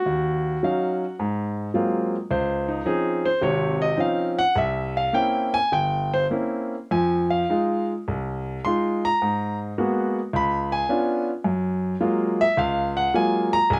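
A warm, smooth grand piano with a vintage character sits up front and plays alone for the full 13.8 seconds, ranging from G1 to C6 in a playful solo jazz passage at 106 BPM in 4/4, with a swung, rubato feel. Rich extended harmonies move from Ebm9 through Ab13 and Dbmaj9 toward a closing Gbmaj9, and a moderate club reverb gives the piano a sense of an intimate room in this short cut from a longer piece.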